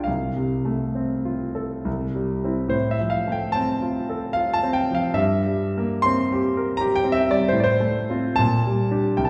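A clear grand piano opens this brief fragment of a romantic classical nocturne, sounding nostalgic and serene in F major, in 3/4 with a rubato feel that drifts between 64 and 85 BPM. The smooth, vintage-toned piano sits up front with a short sustain, spanning C2 to C6 as it moves from F/C through C7/G and on to Gm/Bb by 8.4 seconds. A wet recital hall reverb places the listener further back in the room.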